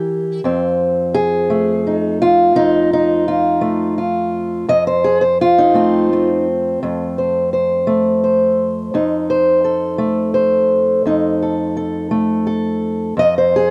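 A fingerpicked acoustic archtop guitar carries this short acoustic country blues cut from a longer piece, playing solo and up front from 0.0 to 13.7 seconds. Its tone is boxy, and finger squeak comes through on the strings as the part ranges from F2 up to Eb5. The mood is rollicking and gritty, moving in a straight 12/8 feel over an F7 chord that arrives at 0.4 seconds. The sound is dry and close, in the manner of a 1970s studio recording, with tape saturation adding grit and little reverb around the instrument.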